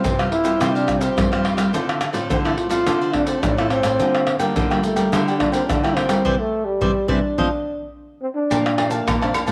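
A straight 4/4 samba-and-choro groove at 106 BPM in F major is carried by a vintage, band-limited percussion section of tube shaker, deep surdo, pandeiro, tamborim and agogo bells played with soft hands, while a bright, crisp picked cavaquinho, a fingerpicked nylon-string guitar with woody old strings and a full-bodied fingerpicked nylon-string bass guitar fill out the accompaniment in this playful, lively short excerpt. Up front, a mellow, breathy trombone plays the melody in jazz style with light vibrato and a soft, whispered attack, sounding intimate yet distant within the moderate echo-chamber reverb and small-room ambience. The band hits an accent from 6.3 seconds, a drum fill arrives at 7.9 seconds, and a new section begins at 8.5 seconds on a Bbmaj7 chord just before the cut.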